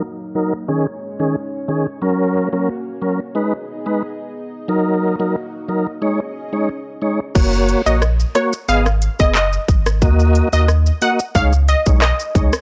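A smooth, clean tonewheel organ with chorus vibrato and key click provides accompaniment throughout this tough, hypnotic dancehall excerpt over a mellow, detuned analog pad that holds sustained chords under a filter sweep until 7.3 seconds, after which a deep, round sine sub bass and an overdriven electronic drum kit with tight kick, metallic hats, handclaps, rim click, crash and shaker arrive at 7.4 seconds, joined at 7.9 seconds by a bright, evolving sawtooth pluck melody, in a dry, gritty recording.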